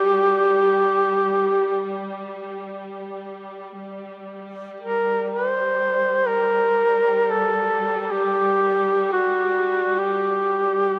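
A warm duduk carries the melody up front throughout these 11 seconds, its soft attacks, scooped notes and vibrato giving the line a folk-style, longing voice within a narrow span from F#4 to C5. This is a Caucasian lament in free time, set in G harmonic minor with the tuning at A4 = 441 Hz, and its mood is mournful. Beneath the solo, a studio string section holds a bowed drone on G3, sounding clear, focused and lush yet distant, with its own vibrato and sitting well below the duduk in level. The passage falls into two statements of the same material, the second beginning at 3.8 seconds. A long, wet cathedral reverb with a decay of 5.0 seconds surrounds the sound. It is cut from a longer piece.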